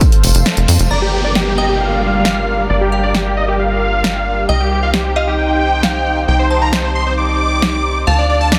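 Euphoric yet bittersweet, this uplifting trance passage is cut from a longer piece and moves through F, G minor, C minor and D minor chords. A thick, detuned unison pad with chorus, phaser and sidechain pumping holds sustained chords beneath a layered techno drum kit, whose punchy snare and tape-warm hi-hats sit up front. A jingly acoustic tambourine rings in the background only until 0.9 s. A tight sequencer bass of sawtooth and square waves drives the groove with a plucky filter attack and its own sidechain pumping. From 0.9 s, huge supersaw chords carry the melody up front with delay, sidechain pumping and a low-pass filter sweep, joined by a glassy FM synth bell with chorus, phaser and delay as a faint, crystalline second line. An electronic downlifter sounds from 0.9 s until 4.5 s, and the piece is framed by light reverb and a dense, heavily limited modern master.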